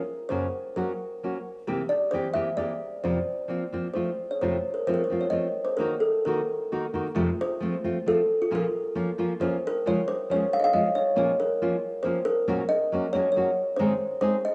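In a loose, rubato triple metre, this passionate, dramatic Mexican folk piece is cut from a longer performance. A kalimba carries the melody from the very start, its woody, hollow fingertip plucks ringing soft and airy up front. At 0.3 seconds a fingerpicked nylon-string guitar joins underneath, a full-bodied classical accompaniment with audible finger squeak. The harmony leans on a brooding minor colour before the music turns brighter at 9.9 seconds, where a new section begins on Db and the chords move on through Bbm and Ab. Both instruments carry a cassette tape character, and the whole home recording sits in a small room bathed in a wet spring reverb.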